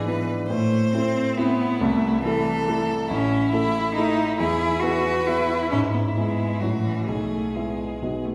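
Heard from further back in a wet concert hall, this spirited, graceful excerpt of a quick classical-period piano trio movement at 137 BPM in 3/4, played with rubato, turns from A minor to E major at 3.1 s, as a smooth, even bowed violin with vibrato carries the melody, a focused, up-front cello sings a second line, and a warm, polished grand piano supplies the accompaniment throughout.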